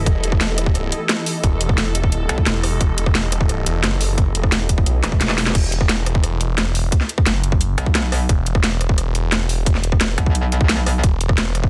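A straight 4/4 groove of tight, overdriven electronic kick and a layered kit with cracking snare, bright hats, rim clicks and crashes drives this dark, mechanical cut of technical drum and bass, with a drum fill at 5.0 seconds. A thick, swirling detuned saw bass with phaser and tube saturation runs throughout, while an aggressive, metallic wobble bass with distortion and chorus stabs in briefly and returns from 7.8 seconds. Until 5.5 seconds a tense, warbling drone and a blurred, mellow granular cloud pad hover in the background with their own reverb and sidechain pumping, all inside a dense, heavily limited, dry modern master.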